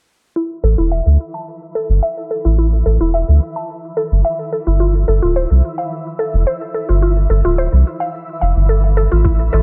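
Organic downtempo at 108 BPM in 4/4 with a straight feel, this brief cut from a longer piece feels warm and meditative. A woody, mallet-like FM synth pluck sits up front playing arpeggios with chorus and delay, while a round analog bass, deep and nasal with a sustained tone, anchors the low end under a sidechain pumping effect. Filter sweeps run across the bass and the pluck throughout, and a twinkling granular texture adds a sparkling octave-up shimmer, soft in attack and bathed in its own reverb. A very quiet, overdriven electronic cabasa ticks underneath from 0.4 seconds. Near the close, a gritty, thumpy sampler-style kick drum lands at 9.3 seconds in the background, followed by a crisp, metal-shelled darbuka struck with hard hands at 9.5 seconds. The chords move from A5 to G9sus4, and the overall mix is dry and low-pass filtered.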